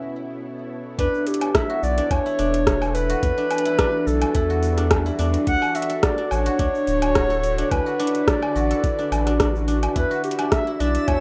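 A nasal, detuned drone holds sustained chords while a silvery guzheng rings out arpeggios in E dorian, opening this earthy organic downtempo excerpt at 107 BPM with a gentle 16th-note swing. At 1.0 seconds a breathy, subtoned clarinet takes the melody with vibrato and delay, over a round sine sub bass with sidechain pumping, an overdriven deep house kit of metallic hats, cabasa, rim click and woodblock, and a soft, tape-toned electronic kick. A twinkling granular shimmer drifts in behind at 10.2 seconds, and the chords move from Em11 to D6 and back in a rough, homemade mix.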